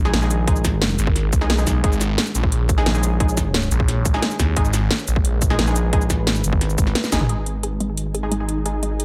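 A growling FM bass sits up front alongside a swirling, phased saw bass and an overdriven electronic kick in this mechanical, aggressive excerpt of dark technical drum and bass, with a drum kit of cracking snare, metallic hats, shaker and toms adding tape-warm character. A bold, nasal orchestra-hit-like synth stab cuts through with reverb and delay, while a deep, moody ambient pad pumps to the sidechain in the background. After a drum fill at 7.0 seconds and a band accent at 7.1 seconds, the drop gives way to a lush unison pluck carrying lo-fi sampler grit, and an ethereal, airy pad with tremolo enters at 7.9 seconds, all in a digital ambience.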